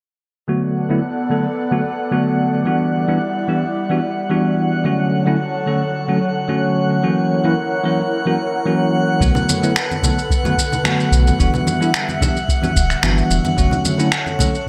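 Sunset chillout in B minor at 110 BPM, wistful and smooth, where a bell-like tine electric piano with low-pass filter and digital delay and an airy, breathy pad drift over Bm7, Em9, Dmaj7 and F#7 chords beneath a glassy, high texture of drifting overtones, until at 9.2 seconds a round sub bass, a deep electronic kick, and gritty finger snaps and shaker with gated reverb enter, with background congas joining a moment later, in a bright 1980s-style digital production with moderate plate reverb.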